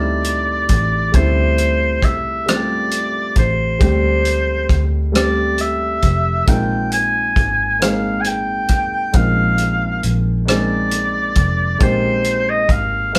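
An oboe melody, a grand piano and a muted electric bass begin together, with a cloth-damped drum kit joining at 0.2 seconds in this sultry, late-night slow R&B piece in a straight six-eight feel. The oboe carries the tune in a classical style with light vibrato, its tone warm yet set back in a roomy, distant space. The piano supports it with intimate chords, where the noise of its action can be heard. The vintage fingered bass sounds dark and round, its foam-muted notes coming through an amp. The drums are thuddy and tight, with a rolled-off top, and hi-hat, kick and rim clicks sit up front, all captured as a band playing live in one room with moderate studio reverb. The harmony rests on a D9sus4 chord before moving to Bb9sus4 at 6.5 seconds, and the passage is cut from a longer piece.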